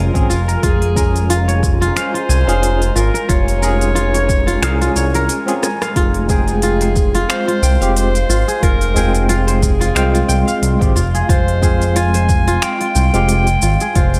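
Set in a digital ambience, this meditative organic downtempo excerpt in F minor at 90 BPM with a light 16th-note swing pairs a mellow, distant clarinet melody with ringing fingerpicked kora arpeggios, a gritty, barky overdriven tine electric piano carrying fast tremolo, sidechain pumping and delay, and a cloudy granular pad blurred into the background, all over a smooth, up-front synth bass, a deep electronic kick and a crisp electronic kit of hi-hat, cabasa, finger snaps and rim click, with a short break at 5.3 to 6.0 seconds topped by a drum fill from 5.6 to 6.0 seconds and a very quiet udu appearing from 9.0 to 11.1 seconds.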